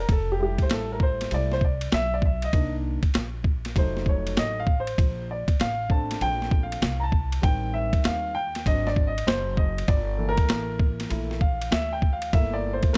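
Nocturnal and cool, this jazz-hop excerpt from a longer hip hop piece moves at 98 BPM in 4/4 with a 64% swing on the sixteenths, played against a tuning of A4 = 442 Hz. A dark, mellow grand piano sits up front and carries a vintage solo across the full 13 seconds, moving through chords like Fmaj9, Cm9, Ab7#11 and Gm69. A woody upright bass plucked on gut strings holds the low end, while a gritty, compressed, pitched-down boom bap kit enters at 0.1 seconds with a thumpy kick, high-tuned snare, hi-hat and ride, all set in a small room with a dark production.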